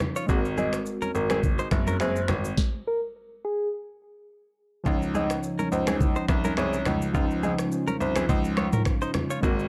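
A lightly swung afrobeats groove drives this sunny, romantic excerpt: an up-front electronic kit of knocking kick, sharp snare, rim clicks, finger snaps, shaker and toms sits over very quiet, soft-handed congas, while a brilliant, polished grand piano carries the bass in short notes. Mellow, chorused analog keys with a filter sweep and a twangy, direct-recorded clean guitar riff with tape echo frame a gentle, round FM synth lead with vibrato, and the groove breaks into a stop at 2.6 seconds. From 5.3 seconds a hollow, airy, flute-like pad enters in the background with a slow attack, all within a dark, dry production.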